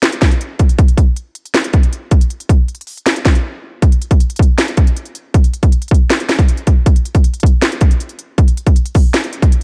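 Hip hop at 158 BPM in a half-time feel, this hard-hitting, menacing excerpt features only an electronic trap drum kit placed up front, with a hard-clipped kick, sharp snare and crisp hi-hats carrying a tape-warm color in a dark, dry production, pausing for a brief break at 3.4 seconds before the second section begins at 3.8 seconds.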